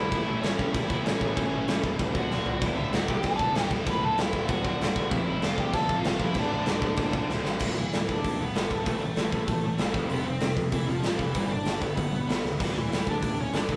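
Punk rock at a driving 192 BPM in 4/4, this upbeat, energetic cut from a longer piece is led by a dark, distorted, bluesy lead guitar melody, with two very quiet, bright, overdriven stack guitars picking riffs beneath it and a growly fuzz bass sitting in the background. Up front, a big acoustic drum kit with a punchy kick and medium-tuned snare rings in a stone room, kicking in at 0.1 s and throwing in fills around 2.3 s and 7.3 s before the music moves into a new section at 7.6 s. The sound is a rough rehearsal-room recording with light reverb.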